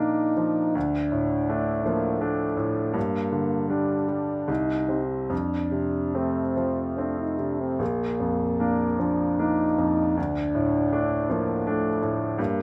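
A French horn carries the melody in this romantic-era classical duo, its mellow tone touched with a light vibrato and set back in a roomy, distant space. Beneath it, a grand piano provides the accompaniment, its brilliant, open voice sitting up front with a long sustain. The mood is tender and serene, moving in a flexible 3/4 at around 71-84 BPM with a gentle rubato. Both instruments play together across the full 12.6 seconds of this fragment cut from a longer piece, moving through a harmony of Bb, Dm, Gm, Cm and F before returning to Bb and Dm. A light reverb softens the overall sound.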